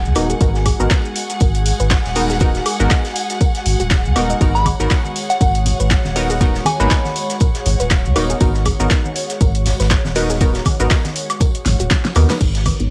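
A hypnotic, moody deep house excerpt at 120 BPM in G# minor opens on a G#m9 chord, with an airy, breathy pad, muted sawtooth dub chord stabs under chorus and analog delay, a round sine sub bass up front and a lush bowed violin section in the background, all pumping against a deep, tape-softened electronic kick. A layered electronic kit with a fat snare, metallic hats, claps, shaker, woodblock and crash joins a very quiet acoustic kit of hi-hat, snare and tambourine, while a dark, warbling pluck arpeggiates through tape echo. A pure FM bell melody surfaces from 4.5 to 7.2 s, low-tuned congas enter at 4.7 s, and a drum fill at 11.7 s closes the passage, all carrying the character of a home cassette recording with light reverb.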